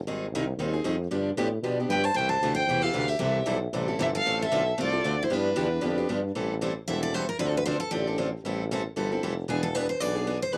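Fiery and swinging, this short cut from a longer acoustic string swing piece in the jazz manouche style races along at 229 BPM in 4/4 with a swung eighth-note feel, settling into A minor from 6.3 seconds. A clear tuba carries the bass line from the start, its soft attack, scooped notes and light vibrato sounding distant and roomy, while a picked dreadnought steel-string guitar supplies bright, full-bodied accompaniment. At 1.9 seconds a warm, bowed violin takes the melody with expressive vibrato, portamento and a smooth top, and a second picked steel-string guitar, a boxy parlour instrument with fresh strings and audible finger squeak, adds its own line. The violin drops out by 6.1 seconds, and from 6.3 seconds the steel-string guitar takes a solo over a minor progression built on Am7, Dm7 and E7. The guitars and violin carry a cassette tape colouring, and the whole has the light reverb and intimacy of a home recording on cassette.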